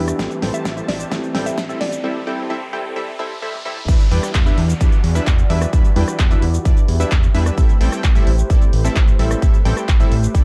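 This emotional, euphoric festival progressive house piece in E minor at 130 BPM opens mid-build-up on a soft, felt-muted upright piano with audible action noise, a lush chorused unison pad, a filter-swept supersaw stab riff and a fat analog bass, each pumping to the sidechain. Beneath them, a big-room drum kit with a huge snare plays fills, a punchy, up-front electronic kick enters at 0.2 s and a background riser runs, while a woody, round mallet-like synth pluck adds a brief melody between 0.5 and 2.0 s. At 3.9 s the piano stops and the drop lands, with the kick, the thick detuned sawtooth bass and airy supersaw stabs over Em7 and Am7, and handclaps, cabasa, toms and crash in a dark, dry mix.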